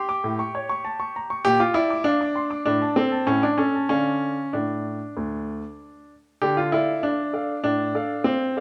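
Restless yet elegant, this brief 8.6-second cut from a longer classical-period piano sonatina in D minor moves at 98 BPM in a straight 4/4. A solo baby grand, polished and up front, spans D2 to D6 and passes from A through Bb to D minor, all set in a moderate recital-hall reverb captured by close, detailed microphones.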